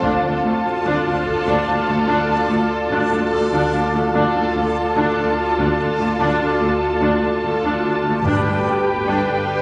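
A tense, uneasy cinematic suspense cue in 5/4 at 73 BPM opens on a detuned, organ-like drone with chorus and phaser, a bright, reversed granular texture swelling with sustained chords, lush bowed violins carrying a focused second line, up-front violas in clear accompaniment, smooth close cellos, very quiet rich double basses and faint hard-stick taiko hits that drop out at 1.6 seconds, all bathed in a wet scoring-stage reverb over D minor until a shift to G at 8.2 seconds brings the taiko back.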